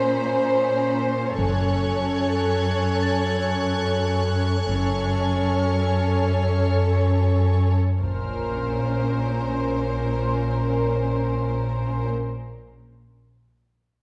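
Tense and ominous, this cinematic suspense cue at 72 BPM sets a rich violin melody against a dark, woody second violin line, lush high violin texture and an intense cello bass, joined at 1.4 seconds by a bowed double bass section, while a delicate, bell-like celesta rings in the background until 8.0 seconds, when a huge, dark impact lands very quietly beneath the strings, all heard from further back in a wet recital hall over Bbmadd9 and Gbm harmony.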